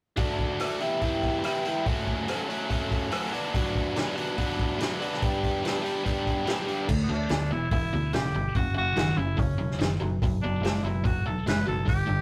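A biting, overdriven electric guitar leads this gritty, swaggering classic rock excerpt, its picked, double-tracked riff sitting up front. A vintage acoustic drum kit drives it in a straight 4/4 feel, with dark cymbals, a medium-tuned snare, rim clicks and a tight kick. At 6.9 seconds the music moves into a new section as a punchy, foam-muted fingered bass enters. A raspy tenor saxophone joins at 7.0 seconds with a pop-style solo melody colored by light vibrato. A moderate small-room reverb and a rough rehearsal-room sound lend the performance a loose, live edge, and it is cut from a longer piece.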